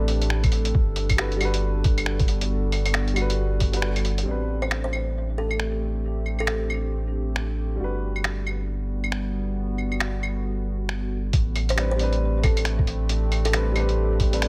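Muffled, tape-worn and lightly reverberant, this nocturnal, wistful future garage excerpt sets a woody upright piano with delay and a warbling, detuned, chorused pad, both pumping with sidechain, over a round sine sub bass and a pitched-down sampler kit of claves, finger snaps and hi-hat, with a thumpy compressed kick that drops out after 3.7 seconds and returns at 11.3, while a hollow, plucked kalimba with dub echo first enters at 4.6 seconds.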